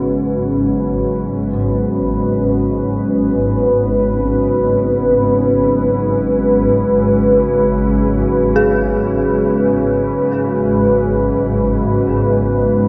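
Drenched in a huge, cavernous reverb with an 8.1-second tail, this dark ambient drone excerpt from a longer piece floats in free time with an ominous mood. Up front, a deep, moody sawtooth pad holds sustained chords thickened by chorus and a sub octave, while an eerie, inharmonic FM bell with a mellow, full-bodied tone plays detuned arpeggios that blur into a diffuse delay. Beneath them, a swarming, granular drone fades in over the whole 12.9 seconds, tense and slowly evolving in the low register.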